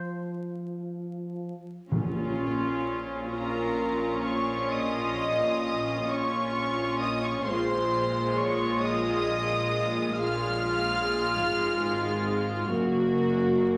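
Classical orchestral music, a slow, melancholic and elegiac romantic movement in 12/8 with free rubato, heard as a passage cut from a longer piece. A mellow French horn chord sounds alone before the viola, cello and double bass sections enter at 1.9 s with sul tasto bowing, the violas and cellos with a soft attack, the rich violas up front and the cellos in the background, while soft-mallet timpani add a round stroke. At 3.3 s two violin sections carry a pure, floating melody and a second line beneath it, all set in a wet recital hall with vinyl crackle.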